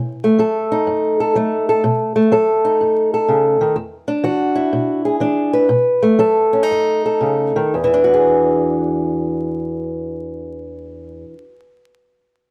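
A fingerpicked old ladder-braced acoustic guitar, boxy and woody with the dull bite of old strings, plays alone up front for 11.6 seconds of gritty, laid-back blues in E mixolydian, swinging at 112-125 BPM in 4/4 through B7, E7 and B7, slowing down from 3.7 to 7.7 seconds before settling on E9, cut from a longer piece and set in light reverb with a dark production and vinyl crackle.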